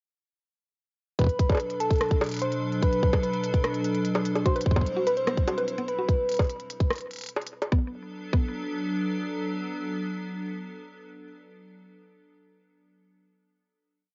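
Muffled by home cassette recording and a small, dry booth ambience, this short, cerebral and melancholic IDM piece opens at 1.2 seconds with a tight, tape-warm electronic kick drum playing a broken pattern up front, beside a glitched, ever-changing organic electronic kit of smooth closed hi-hats, high bongos and rim clicks. A round, gentle, keys-like struck synth lead with chorus and tape echo wanders through a free melody over an icy, crystalline glass pad that sustains detuned chords with built-in reverb and sidechain pumping. From 4.5 seconds a woody, mallet-like FM pluck with chorus and analog delay cycles a 5-step arpeggio loop that drifts against the bar, before the pad settles into a final chord from 7.7 seconds as the kick and pluck linger briefly beneath it.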